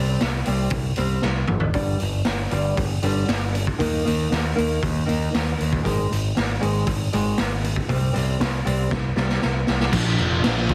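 Heavily compressed with a radio-like squeeze and a touch of light reverb, this cut from a longer quiet-loud alternative rock piece feels dark and cathartic in a straight 4/4. A boxy, woody parlour steel-string acoustic, strung with old strings, fingerpicks arpeggios through a brooding progression moving from C5 to G5, Eb5, Ab5 and back to C5. Beneath it, a bright, growling picked electric bass with overdrive holds the low end, while a raw garage drum kit sits up front with a boomy kick, a medium-tuned snare, a saturated, gritty character and a rolled-off top, adding fills along the way. At 9.9 seconds the acoustic stops as the chords shift to Bb, and two picked electric guitars arrive in the background with a riff: one crunchy and overdriven with tremolo, the other a thick fuzz tone with distortion.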